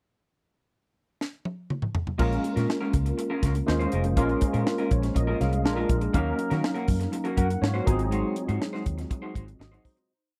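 A crisp, straight 121 BPM groove in 4/4 drives this short, polished 1980s jazz-funk pop piece with an urban, bittersweet mood, as a tight, dry funk drum kit with bright cymbals and a high-tuned snare opens with a fill from 1.2 seconds before a barky, lightly overdriven tine electric piano with ensemble chorus pushes drop2 chords with grace notes, a dark, slightly broken-up guitar with lush chorus picks a sixteenth-note riff lower in the mix, and a round, foam-muted fingered bass slides through agile syncopated lines over Bbm7, Bb7, Ebm7 and Ab7 in a close, dry studio sound that fades out from 8.1 seconds.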